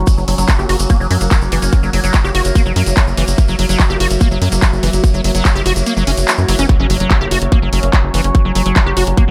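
A tight, layered electronic kick sits up front in this alien, intense psychedelic trance excerpt at 145 BPM, pounding alongside a punchy sawtooth sequencer bass and a drum kit of handclaps and bright hats, while a squelchy, resonant liquid acid bass with chorus and digital delay carries the riff. Behind them, a ring-modulated drone with moving overtones and an ethereal, airy pad with phaser pump in the background, joined by a very quiet, juicy blip pluck and a grainy, distant tube shaker. The kick drops out at 5.9 seconds before the drop lands at 6.7 seconds with a faint electronic impact, as the shaker stops.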